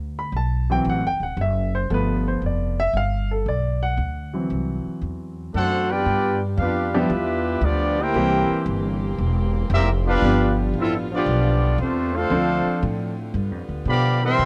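A swinging 4/4 pulse at 116 BPM drives this energetic big band excerpt, with the eighth notes lilting in a firm swing feel. A woody, pizzicato upright bass sits up front from the start, and a natural-sounding baby grand piano with short sustain takes a solo over it through the opening, moving between D7 and G7 chords. At 5.5 seconds a trumpet section enters with the melody, its soft attack, light vibrato and smooth top adding a warm glow, while a clear trombone section carries a second line beneath it. From 6.1 seconds, as the music settles into G major and moves through G7, C7 and Dm7 changes, a dark, vintage saxophone section holds sustained chords very quietly in the background. The sound is a dry, close 1970s-style studio recording, and the passage is cut from a longer piece.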